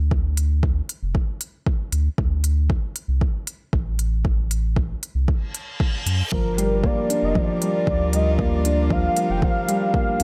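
A felt-muted upright piano sits up front in this melancholic, intimate piano and strings electronica excerpt, its thick-felt tone dark, mellow and vintage, with audible action noise as it plays a riff from 6.3 s. The track moves at 116 BPM in 4/4 with a straight feel in G minor. It is built on a round sine sub bass with sidechain pumping, a deep overdriven electronic kick placed up front, and smooth overdriven hi-hats, both drum parts re-recorded in a large room. A reverse cymbal sounds at 5.5 s, just before the harmony moves from D5 to Gm7 and a velvety synth lead enters with a detuned sawtooth-and-triangle unison, chorus, cassette tape colour and portamento. Beneath it, a close, chamber-like string quartet holds sustained chords, one player per line, with an airy sul tasto bow, light vibrato and its own sidechain pumping. Light reverb and digital ambience surround the whole.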